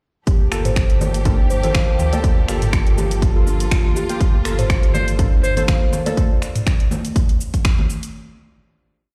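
Afro house with an earthy, warm feel, where a punchy overdriven four-on-the-floor kick and a house kit of snaps, hi-hat, shaker and low toms drive the groove from 0.3 seconds alongside ringing high-tuned congas, while a woody kalimba step sequence with delay, a round sine sub bass, lush bowed strings and detuned analog key stabs all pump against the kick over a Gm9 chord, and a buzzy metal-muted trumpet cuts in briefly at 4.9 seconds, all heard through the stone-room reverb of a big system in a bare room.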